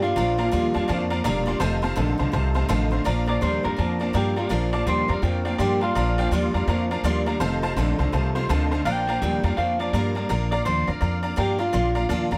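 A swung four-beat rockabilly groove drives this rowdy, retro cut from a longer piece, with a thumpy, woody upright bass up front, a bright, full-bodied picked steel-string acoustic guitar and a detuned, jangly honky-tonk upright piano filling out the accompaniment, while one twangy, slightly broken-up electric guitar plays a low riff until 10.3 seconds and a second electric guitar carries the melody through analog delay, briefly dropping out before returning at 3.3 seconds, all in a small room.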